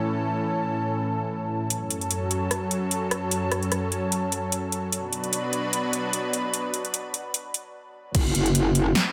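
Bathed in a moderate plate reverb, this menacing, chaotic heavy wobble dubstep excerpt at 149 BPM in F# minor opens with a lush, detuned sawtooth pad pumping under sidechain and chorus, joined at 1.7 seconds by a punchy big-room drum kit of metallic hi-hats, crash cymbal, rim click and snare for a filter-swept build-up over F#m and Bm chords, which breaks briefly before a saturated, metallic FM wobble bass and an overdriven, knocking electronic kick land together at 8.1 seconds.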